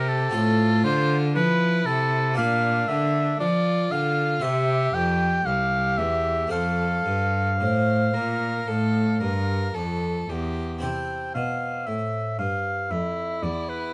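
A radiant, serene baroque-style sonata excerpt opens with all four parts at once: an up-front oboe sings the melody with light vibrato and a soft attack, a smooth bowed violin traces a second line beneath it, an airy, plucked harpsichord fills in the continuo, and a focused, up-front cello anchors the bass, all heard through close, detailed microphones in light reverb before the harmony settles toward C major at 10.8 seconds.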